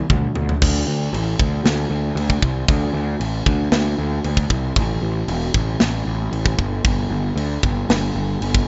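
A drum fill opens this dark, epic heavy metal excerpt at 115 BPM, then a tight kit with bright cymbals and a gritty, saturated edge drives forward alongside a growly, overdriven fuzz bass picked low and up front, all captured in a dry, rough home-demo mix with a dull top end.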